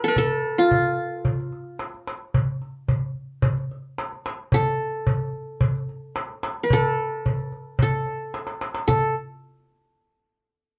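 A small, reverberant room holds a live Arabic maqam ensemble in this soulful, melancholic excerpt from a longer piece, with the bright, fingerpicked qanun ringing up front in its triple-string tone as it carries the melody from the start. A crisp metal-shell darbuka joins at 0.2 seconds, struck with hard hands and sitting close beside it, then plays a drum fill from 8.3 seconds just before the music moves into a new section at 8.9 seconds.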